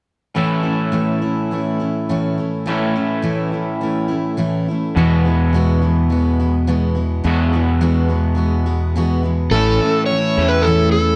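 Folk rock and heartland rock with a hopeful, open-road mood, cut from a longer piece, where a full-bodied jumbo acoustic guitar and a twangy electric guitar at the edge of break-up play together from 0.3 seconds, the acoustic picking out the accompaniment while the electric carries a riff over A and Eadd9 chords. A round, punchy fingered bass enters at 5.0 seconds, and at 9.5 seconds an overdriven slide guitar takes the melody up front as the music moves into a new section. The sound is a dry, close 1970s-style studio recording with light reverb.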